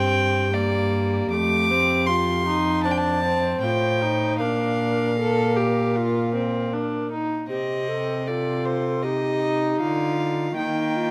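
Classical renaissance-style consort dance in C dorian, solemn and rustic, moving at 78 BPM in a straight 4/4 and cut from a longer piece. A bowed gut-string violin with light vibrato carries the melody up front, a hollow, airy wooden tenor recorder with audible chiff sings a second line, a single period-style viola fills in the accompaniment, and a reedy cello anchors the bass, with all four playing throughout the 11.1 seconds. The close, detailed recording adds light reverb, and the harmony moves from Gm through F and Bb before turning at 7.5 seconds to Cm, then Eb.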